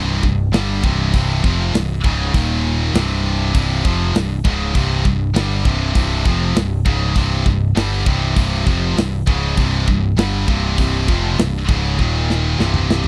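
A tight metal drum kit sits up front with a tight kick and medium-tuned snare, driving this dark, aggressive heavy metal excerpt in C minor at 100 BPM from 0.2 seconds and closing with a fill at 12.0 seconds. Two bright, high-gain distorted guitars play the riff over power chords on C and E-flat, one of them pushed forward in the mix, while a picked electric bass adds a growly, punchy low end. The sound is dry and close, like a 1970s-style studio recording.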